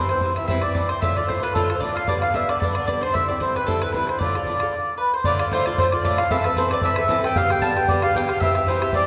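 A reedy, mellow accordion carries the melody up front in this driving, dark and lively Celtic reel, its close-miked, dry tone showing a slow beating in the reeds. Just behind it, a picked mandolin with woody double strings plays a second line in the same high register. An Irish bouzouki, also up front, picks a metallic, double-stringed accompaniment in a lower register, while a damped, tight bodhran keeps a close, swung beat from 0.1 seconds. The tune moves through C, D minor and G before a new section arrives at 5.3 seconds, colored by an A minor add9 chord and settling back onto C. The whole band sounds as if captured in a church or concert hall, with a generous, wet reverb trailing around the players in this short cut from a longer piece.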